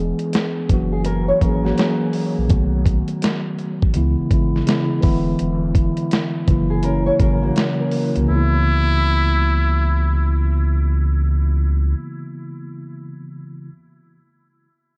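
A mellow tine electric piano and a round sub bass open this nostalgic, melancholic lo-fi hip hop excerpt at 83 BPM in C# minor, with a swung 16th-note feel and the piano coloured by cassette tape and dub echo. A gritty, overdriven sampler-style drum kit with a thumpy kick joins almost at once, and a dark, full-bodied nylon-string guitar, thumb-plucked with finger squeak and dub echo, adds a second line over seventh-chord changes until the drums and guitar drop out around 8.3 seconds. There a buzzy trumpet with metal mute takes a brief jazz-style solo with light vibrato and dub echo, set in an echo-heavy mix with a cassette tint.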